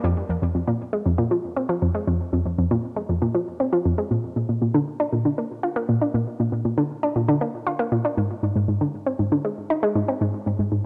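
In a straight 4/4 pulse, this short ambient fragment sets a hypnotic, mysterious mood with a lone analog pluck synth, sounding from the start until 10.8 seconds across a span from F2 to F4. The pluck is round and nasal with a wave-folded edge, a fast attack and short decay, and it sits up front, coloured by chorus and delay. A moderate plate reverb with a 2.7-second tail surrounds it.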